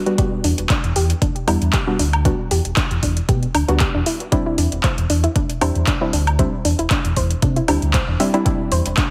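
Late-night and moody, this deep house cut from a longer piece pairs muted, sawtooth dub chord stabs under a filter sweep with soft, round pluck arpeggios, both chorused, delayed and pumping, over an Em9 to Cadd9/E change, while an overdriven punchy kick, a kit of handclaps, metallic hi-hats and woodblock, and a deep, full sine sub bass with octave, entering at 0.4 seconds, sit inside light digital ambience and a heavily compressed, radio-like sound.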